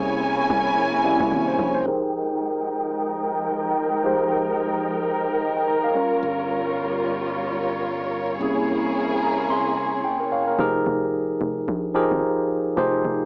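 Swung sixteenths in 4/4 drive this hypnotic, deep amapiano cut, taken from a longer piece and heard through a cassette-tape, small-speaker haze in a modest booth. A clean tine electric piano and a lush, bowed string section with vibrato sit up front behind a low-pass filter, while a hollow, bouncy log drum bass marks the opening and returns at 10.6 s as the strings fall away. A filter sweep runs through the middle stretch, where a bright, growly fingered electric bass appears from 6.2 s to 10.0 s beneath electric piano fills.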